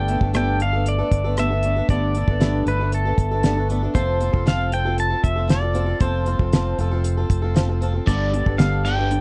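A clean pedal steel guitar played with fingerpicks and volume swells carries the melody over a boxy, picked swing-style acoustic guitar and a punchy fingered electric bass, with a dark, damped 70s drum kit (fat snare, tight kick, hi-hat and rim click) arriving just after, in this open-road, jangly folk rock and heartland rock excerpt at 116 BPM in G mixolydian that moves from Gadd9 to F and back in a dry, close 1970s-style studio sound, until a biting, double-tracked overdriven guitar riff with spring reverb joins at 8.1 seconds.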